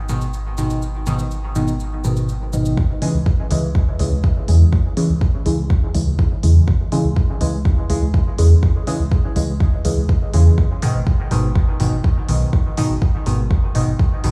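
Hypnotic and meditative, this dub techno excerpt moves at 123 BPM in C# minor, opening on a G#m chord as a clean, dark sine sub bass pumps beneath soft, evolving chord stabs that pump as well, coloured by chorus, phaser, filter sweep and dub echo, with smooth electronic shaker and hi-hats ticking quietly underneath. At 2.8 seconds a deep, tape-toned electronic kick drum arrives up front as the harmony shifts to C#m, returning to G#m at 10.6 seconds. The whole thing sounds as if played over a big sound system in a bare stone room.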